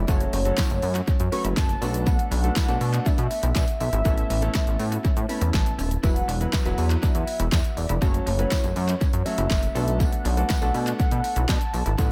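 A punchy, up-front house drum kit of kick, snare, handclaps, hi-hat and shaker drives this confident, energetic dance-pop cut in B minor at 121 BPM alongside a glossy, saturated synth bass pumping with sidechain, a velvety, warbling detuned synth lead with chorus and tape echo, a clear grand piano, a slightly broken-up twangy electric guitar riff set back in the mix, and a jingly tambourine, all over an echo-heavy digital ambience as the chords move from F#m through Bm7, Aadd9 and Esus2.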